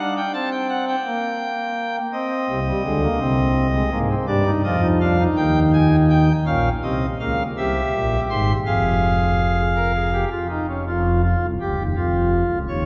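A pipe organ sounds from the first moment, its nasal cornet stop placed up front in a romantic voicing, carrying this baroque-style three-part fugue alone from 0.0 to 12.9 seconds across a range from C1 to C6. The classical piece moves in a straight 6/8 at 55 beats per minute, counted in dotted quarters, with a mood that is at once contemplative and driving. The harmony opens on D7 and passes through Gm/Bb, Cm, Abadd9/C, G5 and Ebadd11 before settling into F minor at 6.5 seconds with Bbmadd9, C7 and Fm. Near the close it turns to F5 and then Dbadd9, and the passage breaks off as a cut from a longer piece. A wet church reverb with a 3.3-second decay surrounds the organ, and the listener seems to hear it from further back in the room.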